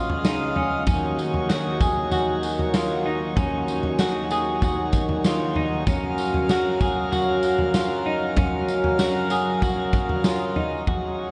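A reedy, breathing pedal harmonium holds sustained chords while a clean, hollow-bodied semi-hollow electric guitar picks arpeggios through subtle chorus and analog delay, and a raw garage drum kit with a punchy kick, medium-tuned snare, tambourine and toms enters at 0.1 seconds to carry this ethereal, floating dream pop excerpt at 96 BPM in Gb major, moving from Dbadd9 through Ebm7 to Gbmaj7 inside a dreamy mix soaked in huge ambient reverb.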